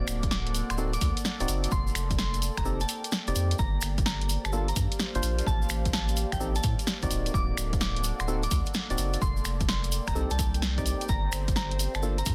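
A dense, heavily limited modern master in digital ambience frames this skippy, late-night two-step UK garage fragment, where a saturated, thick sub bass and a punchy analog drum machine of finger snaps, hi-hat and soft-clipped snare sit up front over a grainy tube shaker. A dry electronic kick drives the swung groove, dropping out from 2.7 to 3.6 seconds. Above it, a hollow, dark organ stab with dub echo and a mellow FM bell melody ride over a smooth, detuned analog pad and a nostalgic, lo-fi tape-like pad with phaser, both pumping in the background through jazzy seventh chords.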